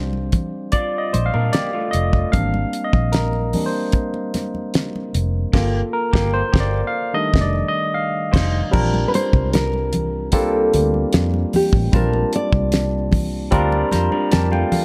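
A barky, lightly overdriven tine electric piano opens this lush, romantic 1970s-style soul at 75 BPM in Bb major, soloing up front over a round, foam-muted electric bass, thick-skinned congas in the background and a damped drum kit with a fat snare and tight kick. A slightly broken-up, lo-fi electric guitar riff enters at 0.7 s, and the band hits accents across Gm9 and F13 chords before a dark, full-bodied nylon-string guitar takes the fingerpicked melody at 9.1 s, finger squeak audible. The guitar riff returns under an electric piano fill at 13.5 s, set in light studio reverb with a dark, warm production.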